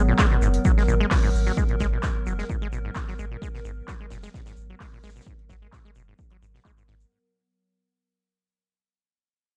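Acid house at 130 BPM in G# minor, trippy and raw, with a punchy up-front electronic kick, dry analog handclaps and a faint tight funk kit of hi-hat, shaker and high-tuned snare driving beneath a squelchy, resonant sawtooth acid bass riff with tube saturation and tape echo, a deep round sine sub bass pumping under the kick, and a warbling, detuned, nostalgic pad holding a G#m7 chord with chorus and reverb, all captured as a dry, gritty cassette-toned fragment cut from a longer piece that fades out across its 7.1 seconds while a filter sweeps over the drums.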